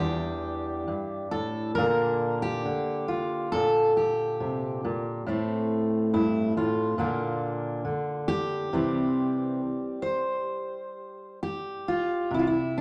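Folk fingerstyle on a solo fingerpicked steel-string jumbo acoustic guitar, full-bodied and up front with fresh strings, drifts in rubato through a warm, nostalgic passage from Em7 through Bb, Gm/Bb and Am to C, framed by a wet, large studio reverb, in an excerpt cut from a longer piece.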